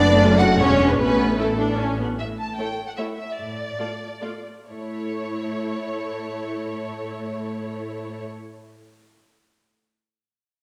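In 3/4 at 127 to 156 BPM, this quick classical-period movement for string orchestra moves with a rubato feel and slows between 1.6 and 4.7 seconds. The mood is lively and graceful, set in A major and cut from a longer piece. The first violins carry the melody with a lush, expressive tone, soft attacks and vibrato, sounding somewhat distant, while the second violins add a warm, smooth second line beneath them. The violas sit up front with an intense, vibrato-laden accompaniment, and the cellos anchor the bass with an even, bowed sound. A clear, focused double bass section reinforces the low end from the opening until it stops at 2.0 seconds, as the harmony moves from Bm7/F# through E7 to A and later passes through Dm/A. A reverberant recital hall, like a church or concert hall, surrounds the ensemble.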